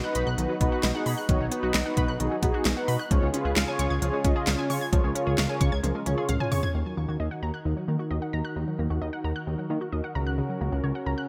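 This is a melancholic, nocturnal synth-pop excerpt in Eb minor at 132 BPM, lifted from a longer piece and framed by bright 1980s-style digital production with light reverb. A mellow synth brass carries the accompaniment, its dark, round, vintage tone warbling with vibrato and chorus, while a smooth analog pad holds sustained chords under lush chorus and a dusty, lo-fi pluck spins decaying arpeggios through chorus and delay. Up front, a fat, detuned sawtooth bass grounds the harmony as it moves from B to Db. An electronic pop drum kit, with a knocking kick, a fat snare, crisp hats, handclaps and toms drenched in gated reverb, punches through until a drum fill from 5.8 seconds. At 6.7 seconds the drums and brass stop, leaving the pad, pluck and bass to drift over Ebm and then Gb.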